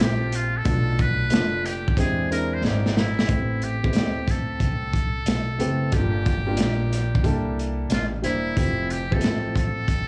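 A nocturnal, mellow jazz-hop groove in A minor at 91 BPM, cut from a longer piece, rolls along with a 16th-note swing under a crunchy, saturated breakbeat kit whose punchy kick and medium-tuned snare sit up front with a rolled-off top. A buzzy, breathy trumpet with a metal mute takes a whispered solo through the first 3.3 seconds, its lines trailed by analog delay, while a vintage grand piano comps through Fmaj9, Bm7b5 and E7alt and a woody, thumpy pizzicato upright bass anchors the low end. A drum fill at 2.6 seconds leads into a second section moving through Am9, Gm7 and C13, all wrapped in the gritty, dry sound of cassette tape and a small room.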